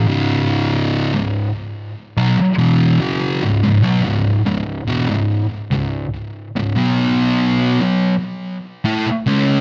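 A thick, fuzz-laden electric guitar opens this short metal passage alone. It is double-tracked, picked and placed up front, and it fills the ominous, heavy mood with a distorted tone that spans C#2 to E4. The tempo is a slow 72 BPM in a straight 4/4, in C# minor with tuning set to A4 = 439 Hz. The harmony rests on C#m from 0.1 seconds before moving to B5 at 6.8 seconds. A digital delay trails the guitar, and a moderate large-studio reverb with a 1.1-second decay lends the dark, warm production a roomy ambience across this 9.6-second cut from a longer piece.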